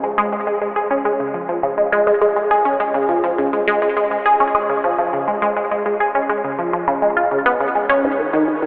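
Expansive and hypnotic, this short ambient excerpt moves at 103 BPM in a straight 4/4, tuned to A4 = 441 Hz. A lone resonant blip pluck carries the whole 8.7 seconds, sitting up front with a juicy, squelchy, ring-modulated bite, fast attack and short decay, ranging from G#2 to G#4 through phaser and tape echo. A huge, wet reverb with an 8.2-second tail surrounds it, and the worn cassette sound adds warbling pitch drift and a telephone-like tone.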